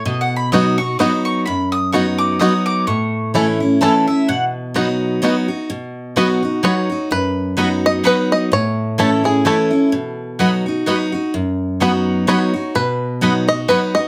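Bluegrass in 3/4 at 128 BPM with a swung eighth-note feel, this joyful, rustic passage in B mixolydian is cut from a longer piece. A bright, full-bodied dreadnought acoustic guitar, picked and up front, carries the accompaniment throughout, while a woody, double-strung mandolin punches in with stabs. The bluegrass banjo, twangy and percussive under fingerpicks, enters at 0.5 s with the melody and sits prominently in the mix. The mandolin takes the spotlight for a solo over the first 5.7 seconds, then hands off to the banjo, whose solo runs to the end as the same section repeats. The harmony moves between B and A, and a moderate studio reverb lends the trio a natural sense of space.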